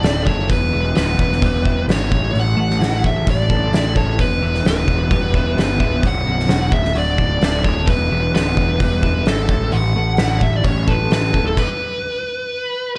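A fuzz-soaked lead guitar carries the melody up front, its dark, compressed tone trailed by a slapback echo, in this dark, angsty stretch of quiet-loud alternative rock cut from a longer piece. Beneath it, a punchy, overdriven picked bass and an oversized, low-tuned drum kit with a fat snare and gritty, saturated character drive a straight 4/4 pulse, while a clean, twangy twelve-string electric guitar ripples arpeggios with tremolo in the background over chords moving through D, Em, A5 and B5. The bass and twelve-string drop out at 11.6 seconds and the drums follow at 11.7, leaving the lead guitar alone in the small room until 13.0 seconds.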